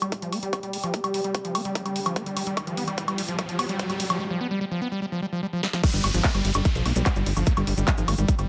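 Psychedelic trance at 147 BPM, hypnotic and intense, cut from a longer piece: a warbling, detuned wavetable pad with phaser sits in the background as a squelchy, gritty acid bass riff with delay is filter-swept through a build-up, pumped by sidechain alongside punchy kick and up-front claps, snare, hats, woodblock and crash, with riser and downlifter effects and a drum fill driving into the drop at 5.8 s, where a tight sawtooth sequencer bass with ring modulation and a grainy, mellow cabasa join the groove.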